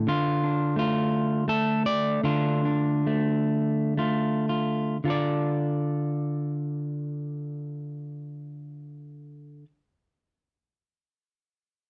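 In a loose, rubato three-beat lilt that slows over the first 5.0 seconds, this wistful, intimate folk fragment, cut from a longer piece, features a lone fingered electric guitar, dark and slightly broken-up, sitting up front in light reverb and playing alone until 9.7 seconds.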